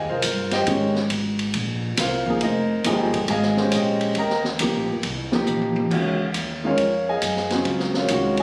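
A concert grand piano with deep bass sits up front in this intense, spiritual modal jazz swing, voicing Fm11 and Eb before a drum fill at 5.5 s leads into G#13sus4, over a woody, thumpy pizzicato upright bass on gut strings and an acoustic kit with dark cymbals, a high-tuned snare and a boomy kick, all captured on a phone in a small room with studio reverb and compression.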